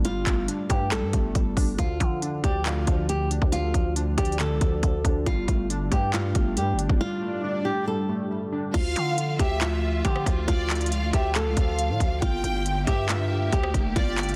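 A dense, heavily limited modern mix with light digital ambience frames this brooding, hard-hitting trap cut from a longer piece, moving at a half-time 138 BPM in D minor. A crisp, up-front electronic drum kit with a hard-clipped kick, hi-hat, handclaps, rim click and crash carries gritty 12-bit sampler character, while a growling, buzzy 808-style bass and detuned, warbling lo-fi synth keys with chorus set a nostalgic bed under a fingerpicked flamenco guitar melody, its finger squeak trailing tape echo. After an electronic swell and a short break, a lush, close violin section with tape echo and a soft, bowed string ensemble in the background arrive at 8.7 s as the synth keys drop away, adding smooth, expressive vibrato over the Dm and Gmadd9 chords.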